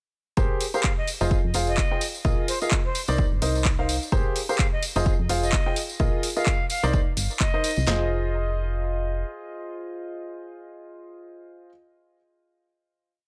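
Bittersweet, soulful piano house in F minor at 128 BPM with a gentle 16th-note swing, built on a present grand piano riff of dotted-rhythm chords in close voicing, pumping and trailed by digital delay, over a round, dark FM bass playing a syncopated riff. A punchy, tape-colored analog drum machine drives a four-on-the-floor kick with snare and claps, joined by a layered house kit's open hats and claps and a tambourine sitting in the background, while a bright, reedy concert flute with vibrato and a soft attack adds delayed phrases from 0.7 seconds. The groove drops away around 7.9 seconds, and the bass lingers until about 9.2 seconds as the piano rings out on a long-sustained Fm7 chord until 11.7 seconds in a dry, close-sounding mix.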